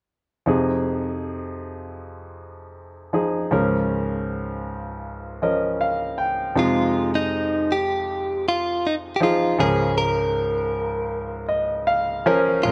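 Longing and melancholic, this slow pop passage, cut from a longer piece, moves in a straight 4/4 over a gentle alternation of Fm7 and Db6 chords. A clear concert grand piano carries the accompaniment from the start, sitting up front with a deep bass and a polished, short-sustained tone, and it adds fills near the close of each half. At 6.6 seconds a clean electric guitar enters with the melody, recorded direct, bright, picked and compressed, holding a narrow middle register. The guitar and piano share the foreground at an even level for the second half. A moderate plate reverb with a long tail lends the arrangement a soft, lingering space.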